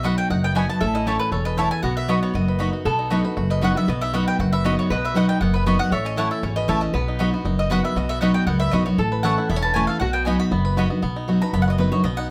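Joyful and driving, this bluegrass passage, cut from a longer piece, rides a straight four-beat pulse over chords that shift between B and A. A picked mandolin carries the high melody alongside a twangy, percussive banjo played with fingerpicks and touched with slapback echo. A lap resonator guitar played with slide adds a nasal, metallic second line. Underneath, a full-bodied dreadnought acoustic guitar sits up front as the loudest part, a second mandolin punctuates with bright stabs, and a pizzicato upright bass on gut strings gives a dark, thumpy foundation. The melodic mandolin and resonator guitar stop at 10.9 seconds, and a mandolin solo takes over from 11.0 seconds to the close, all framed by a moderate studio reverb.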